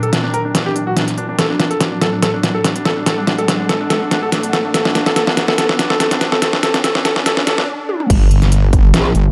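Menacing and chaotic, this half-time heavy wobble dubstep cut from a longer piece runs at 143 BPM, opening on a clear, intimate grand piano melody with audible action noise and dub echo, set over an evolving wavetable pad with phaser and sidechain pumping in the background, a very quiet ethereal airy pad, a faint riser, and a tape-warm, up-front dubstep kit of deep snare, crisp hats, crash and toms building with a drum fill and filter sweep. After a stop at 7.7 seconds, the drop hits at 8.1 seconds as a punchy electronic kick and a heavy, saturated sawtooth wobble bass on G1 enter, with a metallic, aggressive FM wobble bass stabbing in briefly at 8.9 seconds.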